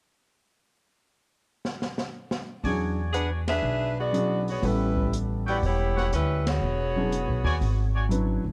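Swung eighths in four drive this energetic, joyful big band swing excerpt, which opens with a drum fill on a dark, boomy small-room kit from 1.6 seconds before the full band arrives at 2.6 seconds over E13 and A13 harmony. A woody, thumpy pizzicato upright bass sits up front beside an intimate grand piano with audible action noise, while a tight, vintage trumpet section adds soft-attack stabs. From 3.1 seconds a clear saxophone section with light vibrato carries the melody, punctuated by two band accents in a dark production with light reverb.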